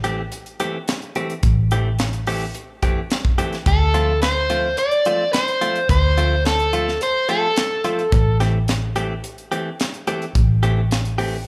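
Straight-eighth soul blues in A minor at 108 BPM, soulful and brooding, moving from Am7 to Dm7 and back over a tight funk kit with a high-tuned snare and a round, foam-muted vintage bass sitting up front. A clean, compressed electric guitar recorded direct plays stabs with slapback echo throughout. A crunchy overdriven guitar carries the melody from 3.7 to 8.4 seconds, also with slapback, all heard in club reverb as if through a venue's PA at a live gig.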